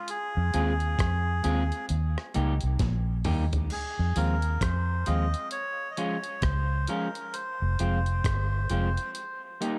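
A reedy, breathy melodica carries a meditative, hypnotic dub reggae melody treated with dub echo over a gritty, compressed breakbeat drum kit with a thumpy kick, a round, punchy foam-muted electric bass up front, and a dark, clean fingered electric guitar, with a drum fill at 2.8 seconds and a brief tambourine flicker in the background at 4.2 seconds, all in a dry, dark production cut from a longer piece.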